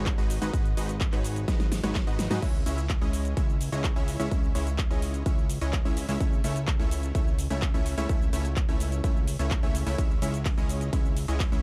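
Euphoric and emotional, this festival progressive house excerpt drives at 127 BPM in C# minor, in 4/4 with a straight feel. A bright, detuned supersaw stab carries the riff from the very start, its fast attack and sustained unison sawtooth tone shaped by an evolving filter sweep, pumping against the sidechain and trailed by delay. Underneath, a fat, thick analog bass fills the low end with a detuned sawtooth sound, also filter-swept and pumping in time. A punchy, up-front electronic kick anchors the groove, while a big-room dance kit adds a huge snare, metallic hi-hats, handclaps, shaker, ride and crash, with a drum fill at 1.5 to 2.4 seconds. The chords move from G#m7 to C#m, then A/C# at 6.2 seconds before returning to C#m, all in a dark, dry production with little reverb.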